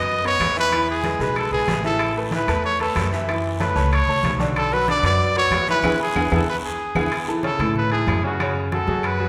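A reverberant concert-hall sound frames this joyful, danceable salsa excerpt at 188 BPM in A major, where an up-front, smooth-topped trumpet with vibrato carries the melody over a brilliant, polished upright piano and a thumpy, gut-strung pizzicato upright bass, while background congas with soft hands, ringing metal-shell timbales, dry woody claves and a raspy guiro (which stops at 7.0 s) drive the rhythm, and the whole band hits an accent from 5.8 to 7.1 s.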